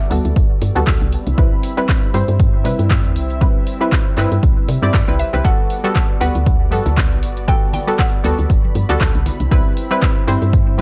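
A punchy, dry electronic kick sits up front on a 4/4 deep house groove at 118 BPM, swung on the sixteenths, while a layered kit of handclaps and metallic, overdriven hi-hats, re-recorded in a large room, fills out the beat. A woody, round FM bass with a fast, decaying attack anchors the low end as muted, sawtooth dub chord stabs with chorus, analog delay and sidechain pumping move between Gmaj9 and Cmaj7. Behind them, a smooth, warbling vintage pad of detuned sawtooth and triangle tones holds sustained chords with subtle chorus and its own sidechain pumping. A mallet-like FM pluck with a noise layer, chorus, phaser and analog delay plays a brief phrase at the opening and returns at 5.2 s, and bright, thin-skinned congas enter in the background at 6.7 s. The soulful, warm mood comes through a gritty hardware sound with vinyl crackle and little reverb, in this short cut from a longer piece.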